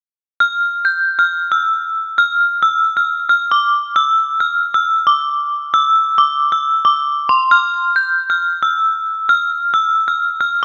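A half-time 4/4 hip hop pulse at 135 BPM carries this brooding, menacing fragment, where a metallic FM bell plays a high melody between C6 and G6 from 0.4 to 10.6 seconds, its inharmonic, warbling tone ringing bright and up front through chorus, a low-pass filter and tape echo in a rough home demo mix with light reverb.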